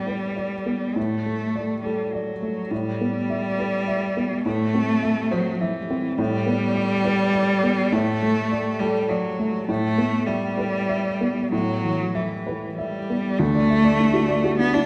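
A dark upright piano and a clear cello begin together, opening a fragile, melancholic neoclassical piece cut from a longer work. The piano provides the accompaniment in a mellow, woody, boxy tone with short sustain, and its action noise sits intimately up front. Alongside it, a single bowed cello carries a second line with focused tone and vibrato, also placed close to the listener. The music moves in a rubato triple metre through G/A, D/A, Em/A and Am, then returns to G/A, D/A and Em/A before settling on D at 13.4 seconds, where a new section begins. A recital-hall reverb, recorded in a church or concert hall, wraps both instruments in a wet, resonant space until the recording ends at 14.9 seconds.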